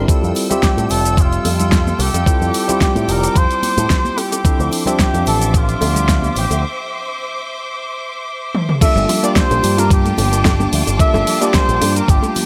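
Up front sits a thumpy, sampler-style electronic kick, driving a sleek, groovy nu-disco excerpt at 110 BPM in G dorian, with a light swing on the sixteenths and a tuning slightly below standard pitch. Beneath it, a picked electric bass with an envelope filter sounds bright and direct, while an overdriven pop drum kit, re-recorded in a small room, adds a fat snare, hats, shaker, crash and toms, and ringing bongos, congas and egg shaker sit in the background. A clean tine electric piano carries the accompaniment with sidechain pumping, tape echo and a low-pass filter sweep through the opening 8.8 seconds. Above, a distant, lush string section holds biting, vibrato-laden chords, and a mellow cup-muted trumpet section, close-miked and veiled, carries the melody from 0.6 seconds. The harmony moves from Fmaj9 to Dm9, then a break and a drum fill lead into a drop at 8.8 seconds on Gm9, where a very quiet, round, detuned pluck adds soft arpeggios, all set in light digital ambience.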